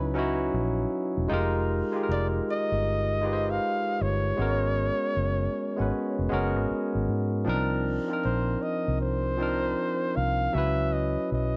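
Introspective and late-night in feel, this short cut from a longer R&B and neo-soul piece moves at 78 BPM in 4/4 with a 16th-note swing. A flugelhorn carries the melody from start to finish in a jazz-style solo voice, its soft attack and vibrato giving it a warm, present glow between Cb5 and F5. Beneath it, a tine electric piano plays accompaniment through a combo amp, sounding bright, barky and clean. A vintage fingered electric bass, muted with foam, holds the low end with a dark, round, amped tone, and all three parts sit up front in the mix. The harmony drifts through minor eleventh chords, from Dbm11 through Fm11, Abm11 and Cm11 before returning to Dbm11 at 10.5 seconds, all wrapped in light reverb and studio ambience.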